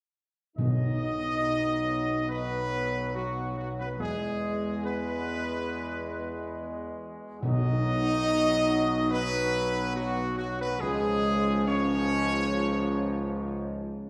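Regal and solemn, this ceremonial classical fanfare in B major moves at a stately 70 BPM in a straight 4/4, cut from a longer piece. A warm trumpet section carries the melody up front with light vibrato and a smooth top. Beneath it, a mellow French horn section sits in the background with sustained chords, a clear trombone section adds lower sustained harmony, and a solo tuba holds the bass prominently. Timpani struck with hard mallets sound articulate, close and dry, marking the opening from 0.6 to 1.8 seconds and returning at 7.4 seconds. The harmony moves from B to E, back to B and on to C#, all set in a church or concert hall with a lingering recital-hall reverb.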